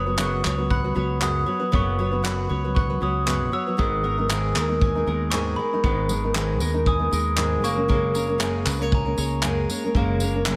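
Easy-going and sunny, this short acoustic pop clip, cut from a longer piece, rides a gentle sixteenth-note swing: an up-front, fingerpicked nylon-string guitar with audible finger squeak carries the accompaniment over a dark, round fingered electric bass; a bright, woody mandolin adds quieter picked arpeggios; and a bell-like glockenspiel struck with soft plastic mallets rings out a second line, joined from 0.2 s by a distant, roomy unplugged kit of punchy kick, handclaps and tambourine played with bundle sticks, the whole set in light studio reverb over F#sus4, G#madd9 and F#add9 chords.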